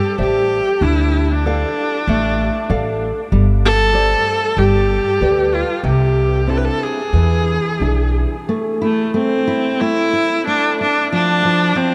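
The recording sits in a vast, echoing space, its wet cathedral reverb letting each note hang long after it is played. This is a fado-style ballad in a free, rubato feel, passionate and full of longing, cut from a longer piece. A single bowed viola carries the melody up front, its tone rich and focused with vibrato. Beneath it, a fingerpicked nylon-string guitar in the classical manner gives dark, full-bodied accompaniment throughout. A pizzicato upright bass with steel strings adds a woody, warm foundation up front from 0.2 seconds until it drops out at 8.2 seconds, just before the harmony turns to A minor at 8.5 seconds and the viola and guitar carry on together to the close.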